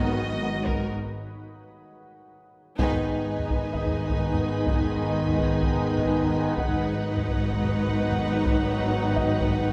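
Vast and brooding, this hybrid orchestral and electronic film cue moves in a straight 4/4 and is cut from a longer piece. Distant, lush violins carry the melody while a second violin line, expressive violas with gentle portamento, and cellos and a very quiet, focused double bass section fill out the bowed string body, all with vibrato. French horns and a tight, bright trombone section hold sustained chords in the background alongside a calm, organ-like drone built from sine and triangle tones with ring modulation, a moving notch, ensemble chorus and its own reverb. A grand piano adds background texture through a delay, and a taiko ensemble struck with heavy sticks enters at 0.7 seconds, with a break and a drum fill leading into a full band accent at 2.8 seconds as the harmony settles onto G#m. The whole ensemble sits in a moderate scoring-stage reverb that lends the cue its sense of scale.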